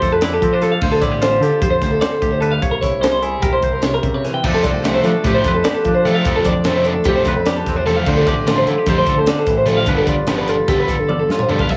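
A bright, small-room mix with moderate studio reverb frames this wistful math rock and midwest emo excerpt in 9/8 at 298 BPM, where an up-front, clean twelve-string electric guitar spins arpeggios over a clean, twangy electric guitar's accompaniment, both bathed in plate reverb, while a growling, overdriven fingered bass and a crisp, gritty fusion kit with a high-tuned snare and punchy kick drive through chords like F69, Dm11 and C7b9, before a double-tracked overdriven guitar riff enters at 4.4 seconds and a drum fill arrives at 11.1 seconds.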